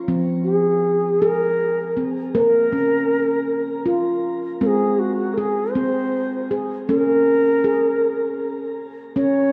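A slow, straight 6/8 pulse at 53 BPM in dotted quarters carries this meditative, hypnotic world fragment in Bb minor, tuned slightly low to A4 = 437 Hz. A ringing nitrided-steel handpan, struck with soft fingertips and sounding mellow, vintage and band-limited, plays up-front arpeggios from 0.0 s. At 0.4 s a pure, woody cedar flute with vibrato and a soft attack enters, carrying a distant-sounding melody over Fm, Bbm and Ab as the second section arrives at 4.6 s. Both instruments glisten with shimmer reverb inside a wet echo-chamber space, giving the cut a dark, warm production.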